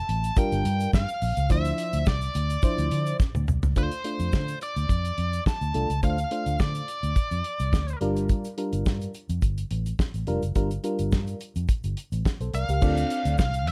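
A nasal, overdriven lead guitar with a parked wah carries the melody in this slick, funky early-eighties boogie funk excerpt at 106 BPM in D minor, dropping out at 8.0 seconds and returning at 12.5 seconds. Beneath it, a round, foam-muted fingered bass and a dry 70s drum kit with a fat snare and tight kick sit up front, with a drum fill at 3.2 seconds. A glassy, bell-like FM electric piano with chorus and plate reverb moves through Gm7 and Dm chords, while a grainy egg shaker stays in the background of the dark production.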